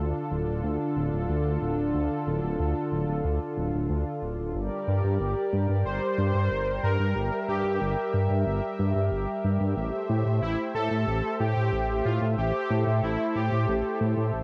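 A straight 4/4 synthwave pulse at 92 BPM drives this nostalgic cut in G dorian, where a deep, rumbling, saturated detuned saw bass anchors the low end while a smooth analog pad with chorus and cassette tape coloring holds sustained chords through Dm, Gm and Am7, before an airy unison supersaw melody with analog delay enters at 5.9 s and sings until 14.0 s, all in a moderate studio ambience with the worn character of a home cassette recording.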